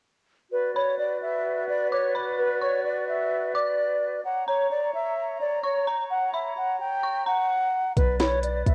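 A half-time trap groove at 129 BPM arrives only at 8.0 seconds, when a knocking, up-front drum kit with crisp hats and a deep, boomy 808 bass land beneath a brooding B harmonic minor passage that has, since 0.5 seconds, set a breathy, expressive concert flute melody over airy sustained chords from a small flute group, with an eerie, inharmonic synth bell joining at 0.8 seconds, all colored by cassette-tape softness and light digital ambience in this menacing fragment of a longer hip hop piece.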